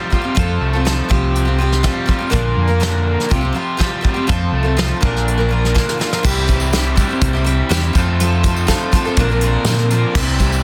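A shimmering, octave-doubled twelve-string acoustic guitar carries the accompaniment in this nostalgic, hopeful folk rock and heartland rock clip at 123 BPM in C mixolydian, alongside a bright, double-tracked overdriven garage guitar riff, a round, dark hollow-body electric bass, and a soft brush drum kit with a punchy kick and a fill at 5.7 seconds, before a jingly tambourine slips into the background at 6.2 seconds, with light reverb over a dense, heavily limited modern master.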